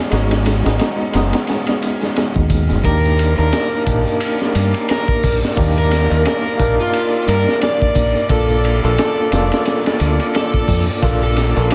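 A small, echo-heavy room wraps this brooding, cinematic trip hop fragment, cut from a longer piece and moving at 88 BPM in 4/4 with a 16th-note swing. A bright, overdriven tine electric piano opens alone at 0.0 s, its amp-driven tone carrying tremolo, 12-bit sampler grit and tape echo over chords moving from Abm7 to Ebmaj7 and then Bbmaj7. A round, up-front dub bass played with the fingers and a crunchy breakbeat kit join almost at once, the drums saturated and rolled-off on top, with dark cymbals, a high-tuned snare and a tight kick, plus tape echo on the kit. A ringing tambourine and triangle sit far back in the mix, also echoed. At 2.8 s an overdriven slide guitar takes the melody, its fingered tone carrying sampler grit and tape echo, and a moment later a dark string section bowed sul tasto adds soft-attack, floating held chords deep in the background.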